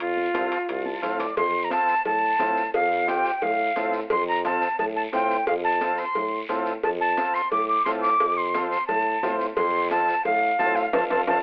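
Cumbia with a joyful, danceable lilt, cut from a longer piece, led by an airy, reedy jazz flute with vibrato up front over a smooth-topped tuba bass, a heavily wavering vintage combo organ entering at 0.3 s, background congas with ringing hard-hand tones, raspy guiro and dry metal-shell timbales and cowbell, with a drum fill and band accent at the close as a soft-attack clarinet with scooped notes slips in at 10.6 s, the recording carrying warbling old-cassette pitch drift and a thin telephone-like tone.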